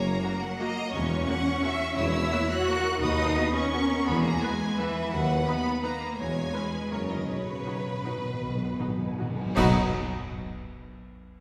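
A lush, vibrato-rich violin section carries the melody of this festive, elegant orchestral ballroom waltz in B major, moving in a rubato 3/4 at roughly 151-185 BPM, while a second violin line sits just beneath it. The cello section is the most present of the lower strings, expressive and bowed, joined by a woody double bass section and a mellow tuba in the background to form a full bass foundation. The viola section enters at 0.2 s with a focused, close accompaniment tucked behind the violins. The tempo slows from 6.7 s as the harmony settles from F# onto B at 7.3 s, where dark, dry cymbals with concert bass drum come in alongside round, soft-mallet timpani, whose fill leads to a band accent at 9.6 s. The whole cut, taken from a longer piece, is bathed in a wet, hall-like reverb that gives the strings a glowing, spacious sheen.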